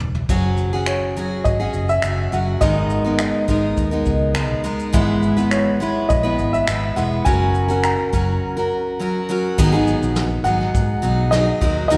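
A straight 4/4 pulse at 103 BPM drives this heartfelt, sunny acoustic pop piece, cut from a longer work and tuned to A4 = 439 Hz. A vintage brush drum kit, distant and roomy with dark cymbals, a punchy kick, snare, toms, shaker and finger snaps, opens with a fill at 0.0 seconds, and the arrangement pauses for a break from 8.4 to 9.6 seconds. Beneath it, a foam-muted fingered electric bass gives a round, amped low end, while a bright, full-bodied jumbo steel-string acoustic guitar sits up front, picking the chords from F#sus2 through G#madd9, E/G# and F# before settling on G#m7. An upright piano carries the melody from 0.9 seconds, its woody, worn and slightly detuned tone ringing high above the band. The whole ensemble is bathed in a wet church reverb that lends it the spacious air of a large hall.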